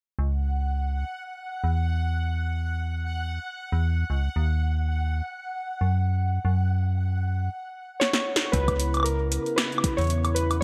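A metallic, up-front FM bass opens this intricate, glitchy IDM excerpt at 115 BPM in C# dorian, its filter sweeping under a bubbling, resonant texture that steps randomly through chorus and built-in reverb, before a drum fill at 8.0 seconds brings in punchy analog drum-machine snare, metallic hats and woodblock with gated reverb alongside warbling, nostalgic lo-fi synth keys with chorus and delay, while a soft electronic kick and a hollow, flute-like pad with sidechain pumping join at 8.5 seconds in a bright, 1980s-style digital production.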